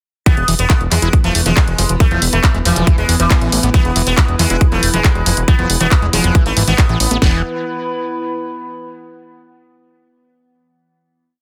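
Psychedelic trance of intense, alien character, built as a short drop in which a tight four-on-the-floor kick with cracking snare, programmed hats and claps from a tape-tinged garage drum kit drive a fat, rolling sixteenth-note analog bass, while a buzzing, shimmering sitar repeats a phased, pumping, echoing riff melody over a squelchy, screaming acid line with accents and slides set in the background, a very quiet morphing wavetable pad drone entering at 0.9 seconds, and a warbling, nostalgic lo-fi pad of slowly shifting chords that enters at 1.0 seconds and rings on into the final chord from 7.2 seconds in a dense, heavily limited modern master.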